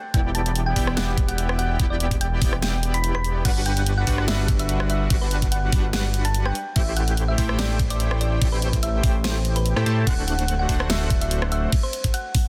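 A knocking, up-front electronic kick anchors this euphoric, playful future bass excerpt at 145 BPM in a swung half-time feel in G major, where a huge snare leads a layered dubstep kit of crash, hi-hat and rim click, a fat, detuned analog bass with a filter sweep pumps under the sidechain, an airy, punchy supersaw stab riff with digital delay cycles through Em7, Gmaj7, Am7 and D7, and a round, tine-like thumb-piano-style FM pluck carries the melody through chorus and delay from 0.0 to 12.5 seconds, all sealed in digital ambience and a dense, heavily limited modern master.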